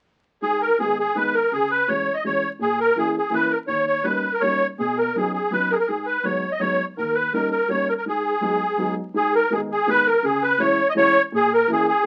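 Nostalgic and whirling, this brief musette waltz excerpt in 3/4 puts a reedy, shimmering accordion with wet musette tuning up front on the melody, while a dark, woody upright piano sits lower in the mix with mellow, boxy accompaniment, both heard through a small room's moderate reverb and the crackle of a very old 78 rpm record.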